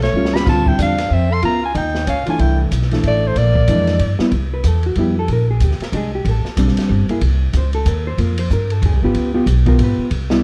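Playful and relaxed, this short cut of small-group swing and bop jazz moves at 187 BPM in a swung 3/4, with a breathy, close-miked soprano saxophone carrying the melody until about 4.2 seconds over a whispered tenor saxophone second line that drops out at 4.0 seconds, while a woody, thumpy pizzicato upright bass, a clean, fingered hollow-body electric guitar and a smooth drum kit with dark cymbals and a boomy kick, opening with a quick fill, continue through 10.4 seconds into a C major passage under light reverb.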